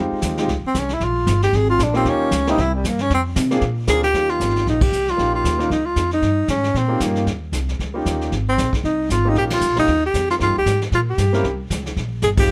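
Grand piano with audible action noise and a woody, growly pizzicato upright bass open this relaxed, sophisticated slice of small-group swing and bop, joined almost at once by a small-room brush kit with a punchy kick and rolled-off top. At 0.7 seconds a breathy, close-miked tenor saxophone takes an intimate, whispered solo up front, its soft attack shaded with vibrato. The band hits accents at 4.8 and 9.5 seconds under light reverb.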